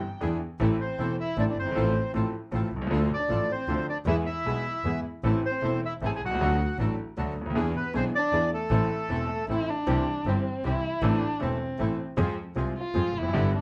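Sultry and dramatic, this rubato tango excerpt in 3/4 at 156 BPM pairs a bright, airy background bandoneon melody in A harmonic minor with up-front, vintage, band-limited bandoneon stabs carrying tape echo, a brilliant, worn concert grand piano with audible action noise, and a close, focused bowed double bass, while a dark, expressive bowed violin with vibrato and portamento moves from a second line to a solo at 9.9 seconds as the harmony turns to C major, all set in a moderate club reverb with a dark production.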